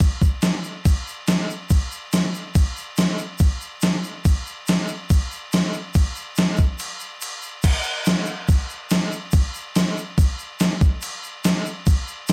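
Rock excerpt with a wistful, carefree mood, built on an up-front, electronic drum machine whose thumpy kick, gated-reverb snare and crash cymbal carry an overdriven, sampler-style bite, re-recorded in a small room. A grainy, mellow tube shaker sits in the background throughout, a light reverb colours the whole mix, and a brief break at 6.8 seconds leads into a repeat of the opening section at 7.6 seconds.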